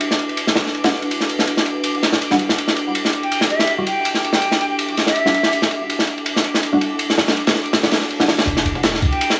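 Frenetic yet nostalgic, this drum and bass cut, shot through with jungle, runs at 163 BPM in E minor with a light swing on the sixteenths, opening on an Em9 chord. A crunchy breakbeat kit sits up front throughout, its tight kick, medium-tuned snare and dark ride cymbal sounding saturated and gritty with a rolled-off top. Behind it, a warbling tape-like pad holds sustained chords under a filter sweep until 8.5 seconds, while a twinkling granular texture adds a sparkling, octave-up shimmer high above. Muted, full-bodied dub chord stabs with phaser and dub echo arrive at 0.8 seconds, and a pure, vibrato-tinged silver concert flute carries the melody from 3.2 to 5.6 seconds, returning briefly near the close. Toward the end, a very quiet reverse cymbal and riser creeps in, and a deep, boomy 808-style bass with tube saturation drops in at 8.5 seconds, all heard through a dry, cassette-coloured recording with a small room ambience.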